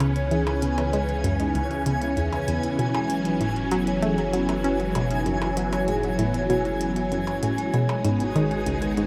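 Ambient, sequencer-driven space music at 97 BPM, hypnotic and mysterious, where a swirling, phased string machine holds sustained chords up front over a round analog bass, a bright, detuned analog pluck riff with tape echo, ringing metallic vibraphone arpeggios under a filter sweep, clicky overdriven hi-hat and percussion blips, and a twinkling granular shimmer, all set in a huge ambient reverb as the harmony moves from C#m7 to F#m7 at 2.8 seconds and G#m7 at 7.7 seconds.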